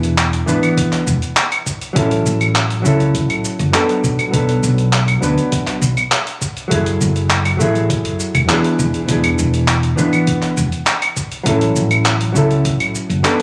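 A clean, dark hollow-body jazz guitar sits up front in this smooth sunset chillout excerpt, playing fingered accompaniment chords through a tape echo across a progression that moves from E7 through A6, Bm7 and F#m9 before circling back. Beneath it, a woody fretless electric bass carries the low end with a round, amped tone. A dusty soul sampler-style drum kit, gritty and compressed with a tape-warm grain, keeps a straight pulse of hi-hat, cabasa, claves and handclaps in a small room reverb, also placed up front. A thumpy electronic kick drum joins at 0.8 s and sits lower in the mix. The excerpt sounds as if it were captured on a phone in the room, with club ambience, light reverb and compression giving it a smooth, warm mood.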